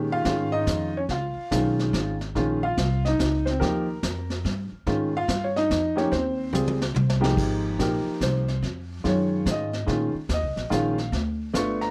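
Jazz piano trio with a relaxed, sophisticated mood, swinging at 144 BPM in 3/4 and centred on Ab major, heard in a short section cut from a longer piece. A concert grand carries the melody up front across a broad range, its deep bass and intimate, natural tone joined by audible action noise, and it takes a solo from 7.4 seconds to the end. Underneath, a woody pizzicato upright bass with steel strings holds the low end, while a vintage brush kit enters at 0.2 seconds, its dark cymbals, medium-tuned snare, punchy kick and rolled-off top sounding like a small room. The drums play a fill from 6.5 seconds that leads into the piano's solo passage. The harmony moves through rich extended chords such as Bbm7, Bbmadd9, Abmaj7, Ab69 and Ebm11/F before landing on G9, all set in light reverb.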